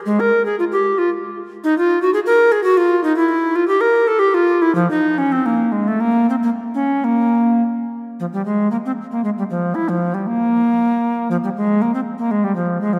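Classical baroque-style fantasia for unaccompanied bass recorder, solemn and grave, moving in a rubato triple metre through a short cut from a longer piece. The solo bass recorder sits up front with an airy, woody tone, tongued notes carrying a chiff and touched with vibrato as it plays from 0.1 to 13.0 seconds. A wet church reverb with a long 2.8-second decay surrounds the line and lends it a spacious, devotional glow.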